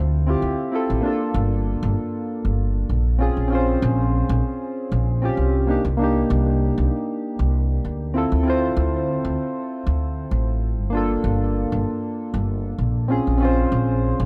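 Soft, round electric-piano-style synth keys sit up front with a mellow, detuned shimmer, their chorus and tape echo colouring gentle chords that move through Dm9, Gm9, Bbm9 and Cm9 in G minor. A woody, dark upright bass, plucked pizzicato on steel strings, plays beneath them in the low register for the whole 14.3 seconds of this fragment from a longer piece. It's a smooth, warm sunset chillout groove at 97 BPM with a light sixteenth-note swing, captured in a small room with a dry, gritty character.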